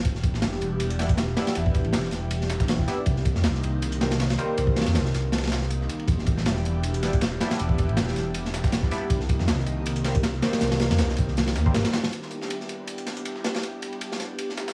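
Nostalgic and raw, this drum and bass and jungle excerpt rides on an up-front, saturated breakbeat kit with a tight kick and dark cymbals, backed by a compressed, dusty soul sampler-style kit of hi-hat, snare and tambourine set back in a large room, while a nasal band-passed chord stab with chorus, phaser and dub echo enters at 1.0 seconds, a deep, rumbling detuned saw bass drops out at 11.8 seconds, and an airy, breathy pad sustains Em7 and Cm7 chords over vinyl crackle and light reverb.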